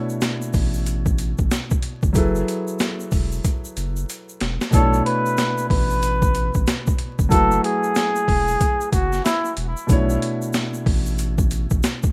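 Boom-bap hip-hop at 93 BPM in B minor, moody and reflective, where a gritty, pitched-down sampler drum kit with a thumpy kick, high-tuned snare and hi-hat sits up front over a thick saturated sub bass, an intimate vintage concert grand piano with audible action noise and cassette tape character, and a grainy tube shaker, with a drum fill from 3.4 seconds before a breathy, veiled bucket-muted trumpet carries a jazz-style melody with tape echo from 4.7 to 9.5 seconds, all in a rough home-demo mix with vinyl crackle.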